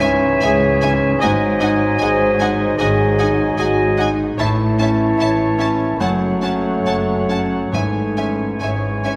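A brilliant grand piano with long sustain leads this brooding, tragic passage, cut from a longer romantic movement for piano and orchestra in C# minor, moving at a slow, rubato 66-76 BPM in 4/4. An intense chamber violin section carries the melody beside the piano, while a bright solo clarinet, a dark and distant cor anglais, and a soft-attack, sul tasto second violin section in the background weave second lines. Beneath them, a mellow bassoon and a very quiet, focused viola section supply accompaniment, a vintage French horn section holds sustained chords at a level matching the piano, and a lush cello section and a rich double bass section anchor the bass. The harmony moves from C#m through G#7, A and F#m before settling on C#m/G#. At 7.7 s a very quiet timpani with soft mallets and calf heads adds a round note, sounding until 9.0 s. A wet scoring-stage reverb gives the ensemble a spacious, immersive sheen.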